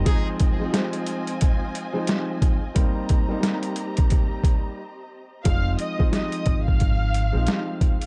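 A swung 89 BPM boom-bap beat from a gritty, thumpy, pitched-down sampler drum kit drives this dark, moody hip-hop piece in F minor, where a mellow vintage grand piano with audible action noise and a distant, lush string section with portamento hold Fm7 and Cm7 chords until the strings drop out at 5.4 s, and at 5.5 s a round, up-front fingered electric bass returns beside an expressive violin section with vibrato and tape echo, the whole set in a small room.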